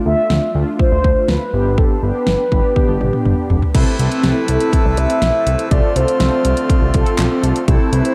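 In a dark, lush hall, this wistful yet upbeat synth-pop clip sets a warbling, horn-like synth lead with shimmering echo over round, brassy synth brass, a thick, nasal analog bass and a punchy, up-front pop drum kit whose fill at 2.8 s leads into a second passage where a reedy, hollow accordion joins with sustained chords at 3.7 s.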